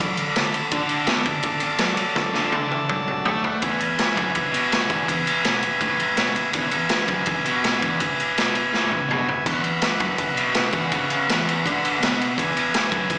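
A punchy, gritty garage drum kit sits up front in this swaggering, rowdy garage rock clip, heard as a live gig through the venue's PA with a recital hall's reverb and a small-speaker sound. A dark, double-tracked fuzz guitar with slapback echo drives a low riff, while a buzzy, overdriven combo organ holds sustained chords above it and adds brief fills. The drums throw in fills starting at 2.2 and 8.7 seconds, and the harmony moves to an E chord at 3.6 seconds as the second section begins.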